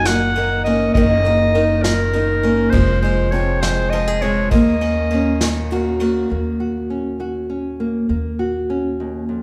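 A bright, present clarinet opens this reflective, melancholic acoustic folk excerpt in Eb dorian, carrying a classical-style solo melody over fingerpicked nylon-string guitar, boxy swing-style picked arpeggios on a second acoustic guitar, and a woody, thumpy pizzicato upright bass on gut strings. A vintage brush kit joins almost at once, with dark cymbals, a medium-tuned snare and a punchy kick under a rolled-off top. The music moves in a slow 6/8 at 67 BPM, with the harmony drifting from Gb6 to Fm and on to Ebm7. The clarinet steps away at 5.7 seconds, and by 6.4 seconds the nylon-string guitar and upright bass carry the closing section on their own until 9.4 seconds. A wet recital-hall reverb gives the whole ensemble a spacious, churchlike resonance.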